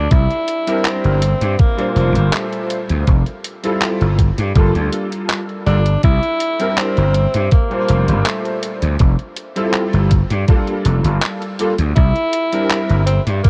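Nostalgic and melancholic, this vaporwave excerpt drifts along at 81 BPM in a straight 4/4, set in G dorian with chords cycling through C7, Gm7, Fmaj9 and Gm9. A clear tenor saxophone carries the solo melody in a jazz style from the first moment, its light vibrato, scooped notes and smooth top given a forceful punch and trailed by tape echo. Beneath it, a gritty slap bass sits up front, overdriven and growly, while a thumpy electronic kick and a detuned 8-bit drum machine of handclaps and hi-hat add sampler-style, tape-warm rhythm in a small room. Entering at 0.7 seconds, a bright electric grand piano plays vintage accompaniment with a clangy low end and long sustain, thickened by ensemble chorus and analog delay. The whole track has light reverb and the hazy character of a cassette tape, and it is cut from a longer piece, ending at 13.5 seconds.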